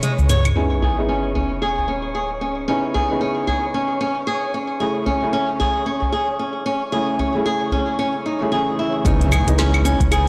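A short fill on the overdriven afro-pop kit, with its woody snare, metallic hats, claves, shaker and toms, opens this earthy, swung organic downtempo excerpt. Fingerpicked flamenco guitar arpeggios, fresh-stringed with audible finger squeak, play up front over a soft, felt-muted upright piano that pumps under a filter sweep, while an airy, breathy wind-like tone hovers in the background. A round, hollow-body fretless bass sounds briefly near the start, a sub drop and impact land at 0.6 seconds, and a deep, saturated udu plays until 7.8 seconds. At 9.1 seconds a second impact and a deep overdriven electronic kick arrive as the bass returns, all bathed in lush hall reverb on a blown-out, overdriven recording.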